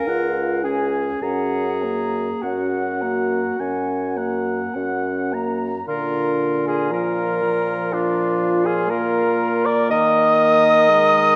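Set in a dark, reverberant concert hall, this short cut from a slow, lyrical romantic movement for wind quintet drifts in 4/4 at 50 to 62 BPM with a gently rubato feel. A hollow, pure-toned concert flute with vibrato sings the melody over a smooth-topped oboe second line, while a bright clarinet sits up front and a distant, roomy French horn fills in the accompaniment. A mellow bassoon enters at 0.1 s to carry the bass, and the music moves into a new section at 5.9 s.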